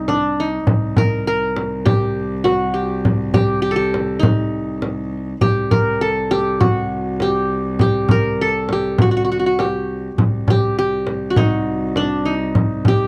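A bright-edged qanun, played with fingerpicks on its triple strings, carries the melody up front over a clear, earthy cello drone on a low C bowed with light vibrato, joined at 0.1 seconds by a small frame drum struck with soft hands, in a hypnotic, melancholic Turkish makam ensemble excerpt in C makam nikriz at 101 BPM in straight 4/4, captured as a dry, close 1970s-style studio recording with light reverb.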